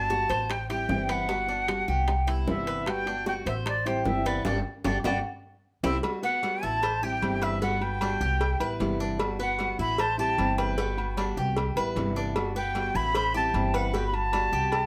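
Relaxed and danceable, this excerpt of Cuban son and guajira puts an airy, expressive jazz flute with vibrato and a crisp chiff up front alongside a woody, thumpy pizzicato upright bass, while a bright fingerpicked nylon-string guitar accompanies and a metallic, double-strung Cuban tres spins arpeggios over Am7, Gmaj7 and Cmaj7 changes, tight high-tuned bongos with cowbell and ringing metal-shell timbales with agogo bells sit in the background, and a drum fill with a band accent from 4.5 to 6.0 seconds leads into the second section under light reverb.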